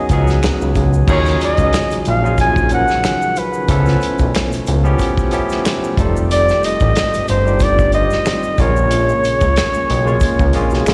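A smooth flugelhorn with light vibrato carries a sultry, jazz-style melody over barky tine electric piano with medium tremolo, a fat, nasal, saturated analog bass, a dark-cymbaled soul drum kit, close egg shaker and handclaps in the background, and a very quiet detuned analog pad entering at 1.1 seconds, all in a straight 92 BPM R&B and neo-soul groove heard as a live gig through the venue's PA with recital hall reverb.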